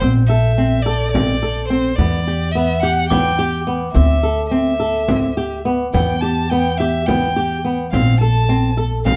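Set in a straight 7/8 at 213 eighth-note beats per minute, this restless, shimmering piece of contemporary chamber music cuts in mid-flow, moving through chords such as Bbmaj9, Em7 and D7sus2. Up front, a single bowed violin sings a rich, focused melody with vibrato over fingerpicked flamenco guitar arpeggios and woody pizzicato upright bass, while a deep frame drum struck with hard hands sits in the background. A bell-like glockenspiel played with soft plastic mallets rings faintly from 3.1 to 4.1 seconds, and moderate studio reverb gives the ensemble a sense of space.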